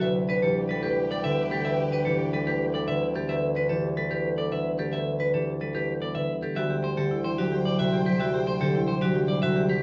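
Classical minimalist pattern music in a bright, hypnotic 3/4 at 110 BPM in D mixolydian, this excerpt sets a twangy clean electric guitar melody over mellow thumb-plucked concert harp accompaniment, ringing hard-mallet vibraphone arpeggios with slow motor vibrato, and a solo bassoon holding a low D with light vibrato, while a lush, distant bowed string section sustains chords from 0.0 to 3.1 seconds and returns at 6.6 seconds as the harmony moves from Gadd9/D to D9sus4, all in a dark production with a large studio reverb.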